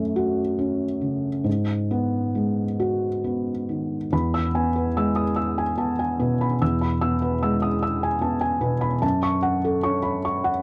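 A dry, close 1970s-style studio sound with light reverb frames this hopeful, intimate neoclassical minimalist piano piece in E major, a short cut from a longer work in which a solo felt-muted upright piano, dark and mellow with thick felt and audible action noise sitting up front, plays rubato in 3/4 at 67-75 BPM across a range from E2 to E6, moving from F#m and G#m7 to E at 4.1 seconds before turning to F#m at 9.0 seconds.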